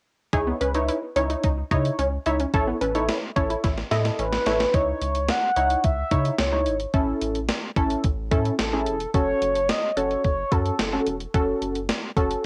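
Synth-pop with a nocturnal, cool mood, cut from a longer piece and recorded at home on cassette: a thumpy, gated 80s digital drum machine and a rubbery, bouncy square bass play alongside two punchy, detuned funky polysynth comps and a warbling unison pluck playing arpeggios. A drum fill begins at 3.6 seconds, and during it a horn-like, round synth lead enters to carry the melody from 4.2 to 11.1 seconds, bathed in chorus, phaser and analog delay.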